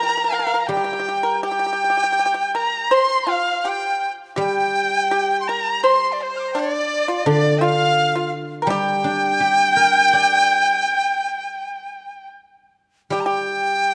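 A bright, buzzing bamboo dizi leads this wistful, graceful Chinese traditional chamber piece in G yu mode, flowing freely around 82 BPM in 4/4 with its crisp, vibrato-laden melody up front, while a clear, focused bowed erhu traces a second line with portamento until 12.3 s, a mellow, dry pipa played with fingerpicks adds a percussive second line close at hand, and a ringing, silvery guzheng supplies accompaniment beneath, the ensemble sitting in a moderate concert hall reverb in this passage cut from a longer piece.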